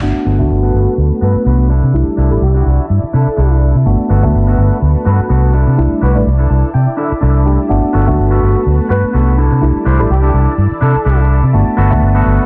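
Funky and sunny, this house excerpt rides a swung 125 BPM groove in G major, cycling between Gmaj9 and C69 chords across its 12.5 seconds. Up front, a dark, round, foam-muted fingered electric bass carries tube saturation, while a clean tine electric piano plays the accompaniment through a phaser, sounding as if heard through built-in speakers. A picked clean electric guitar with spring reverb enters at 0.3 seconds with a riff and adds a fill between 6.3 and 7.7 seconds. In the background, a lush string machine holds slow-attack sawtooth chords with ensemble chorus and 12-bit sampler grit, and a fat, nasal analog synth brass carries a soft-attack melody with vibrato, chorus and delay from 1.2 to 11.2 seconds. A filter sweep runs throughout, and the dry, dense, heavily limited master keeps the sound close.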